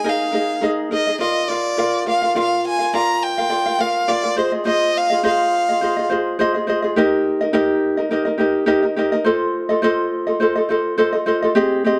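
A clear, smooth, even violin with vibrato carries the heartfelt, sunny melody up front in this pop passage at 104 BPM, a lightly swung 4/4, before dropping out at 6.1 seconds while a bright, fingerpicked acoustic ukulele accompanies throughout over chords moving from Absus2/Eb through Bb, Ab6 and Eb to F7, all set in a dark production with a moderate plate reverb.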